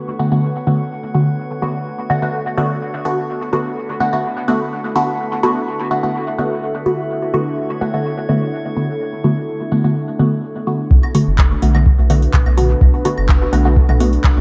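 At 126 BPM in a straight 4/4, this meditative, hazy dub techno excerpt in B minor opens on a dark, detuned ambient pad holding a Bm7 chord with sampler grit, a calm glassy harmonics texture and muted, up-front filtered chord stabs with phaser and dub echo, all pumping to the sidechain, before a round sub bass, a deep tape-warm kick, overdriven claves and toms, and a booming analog drum machine with metallic hi-hats and handclaps arrive around 10.9 seconds in a dreamy, reverb-soaked mix.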